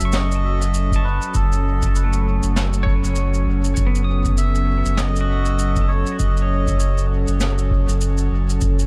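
Meditative and spacious, this ambient dub fragment drifts at 99 BPM with a swung 16th feel over a single F#m6 chord in F# dorian. A reedy, nasal melodica carries the melody through tape echo and 12-bit sampler grit until 7.1 s, while an airy, breathy pad holds chorused chords and a bright, clean pedal steel guitar spins slide arpeggios with volume swells into its own tape echo. Underneath, a round sine sub bass sits up front on F#1, brushed shaker and snare drum ripple through dub echo, and a deep analog kick drum joins in the background at 0.9 s, all inside a studio ambience.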